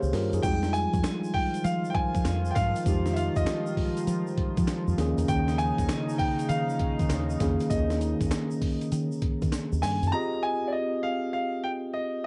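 R&B in a new jack swing vein, this slick, punchy cut from a longer piece moves at 99 BPM in 4/4 with a swung sixteenth-note feel in F minor. A gritty, compressed breakbeat sampler-style kit sits up front, its thumpy kick and high-tuned snare joined by hi-hat, handclaps, tambourine and crash cymbal, while a grainy tube shaker sounds distant in a larger space. A deep dub fingered electric bass, dark, round and foam-muted, anchors the low end beneath a mellow tine electric piano heard clean through its built-in speakers. A chorused pulse-width pad adds shimmering, retro sustained chords with a slow attack over Fm9 and Eb7sus4, and a polished grand piano carries the melody high in its register, bathed in plate reverb. At 10.1 seconds the drums, bass, shaker and pad stop, leaving the electric piano and grand piano to close on Fm9. The whole has the hazy, rolled-off top end of a home cassette recording in a small room.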